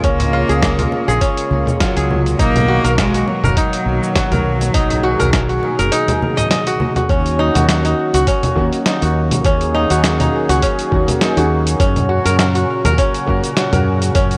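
Swung 16ths at 102 BPM carry this hypnotic organic downtempo piece in Eb minor. A gritty, up-front sampler-style drum kit and a thumpy electronic kick sit over a round, punchy fretless bass, while a crisp fingerpicked kora rings out arpeggios through digital delay. A biting bowed cello with vibrato carries the melody until 6.5 s, alongside very quiet distant congas and a sparkling granular shimmer. A soft felt-muted upright piano enters at 8.6 s alongside a detuned sawtooth pad pumping with sidechain, all under worn, warbling cassette tape.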